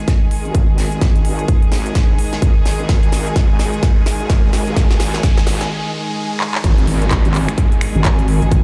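A bouncy, swaggering bass house groove at 128 BPM in 4/4 with a swung 16th-note feel, this short cut opens on a build-up where a punchy, up-front electronic kick and a big-room kit of snaps, claps, crisp hats and a huge snare run a drum fill before a brief break at 5.7 seconds. Bright, distant symphonic strings hold sustained chords through a low-pass filter and sidechain pumping, joined from 0.5 seconds by a heavy, saturated wobble bass built from detuned square and sine tones with chorus, while a background riser climbs from 2.5 seconds. The drop lands at 6.6 seconds, all set in a large studio reverb with the sound of a big system in a bare room.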